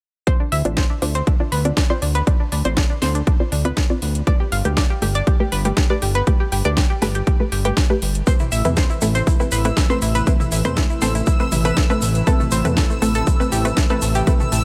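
Progressive house with a bittersweet, dreamy mood, this excerpt from a longer piece moves over a steady, straight pulse through Dm7, Gadd9 and Amadd9. From 0.3 seconds, a round analog pluck plays arpeggios with chorus, tape echo, sidechain pumping and a filter sweep, while a bright, detuned unison pluck adds punchy stabs through its own tape echo and pumping. Underneath, an overdriven electronic kick sits up front, joined by a house kit of cracking snare and metallic hi-hats, and a fat sawtooth bass, also up front and pumping. At 8.3 seconds, an airy unison pad brings sustained chords treated with chorus and phaser, as a grainy egg shaker and background electronic toms and congas fill out the groove. From 9.2 seconds, a reversed, granular swelling texture high in register drifts in with its own reverb, all of it set in a digital ambience.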